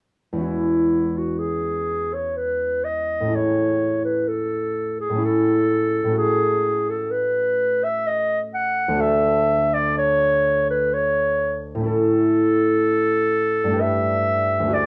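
A roomy, distant-sounding clarinet carries the melody up front in this luminous, pastoral fragment of an impressionist classical duo, with a ringing, thumb-plucked concert harp entering at 0.3 seconds to accompany it in a rubato 3/4 through chords such as Amaj7, Dmaj7 and a closing Gadd9, all under light reverb and the worn, warbly pitch drift of old cassette tape.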